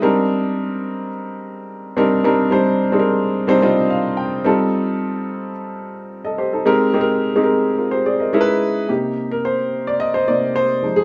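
A straight 4/4 pulse at 108 BPM carries this slick, urban pop passage in C minor, cut from a longer piece, where a solo grand piano with a warm, smooth, vintage tone sits up front across a range from C3 to G5. The piano moves through Cm7, F9, Abmaj7 and Dbm7 chords, adding a fill from 3.3 to 4.5 seconds before breaking into a solo section at 8.9 seconds as the harmony returns to Cm7. A short, wet studio reverb gives the sense of a live performance in a single room.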